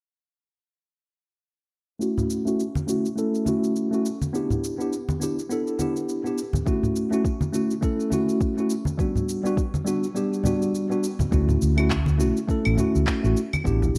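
A worn, slightly out-of-tune tine electric piano with a filter sweep and delay opens this relaxed sunset chillout excerpt in D major at 103 BPM with a swung 16th-note feel, alongside overdriven electronic shaker, claves and handclaps, with close, warm acoustic congas joining a moment later, while a soft, overdriven electronic kick enters at 6.7 seconds and briefly drops out before a growly, punchy fretless electric bass with tube saturation and chorus arrives at 11.3 seconds on a Dmaj7, the whole mix soaked in a dreamy plate reverb.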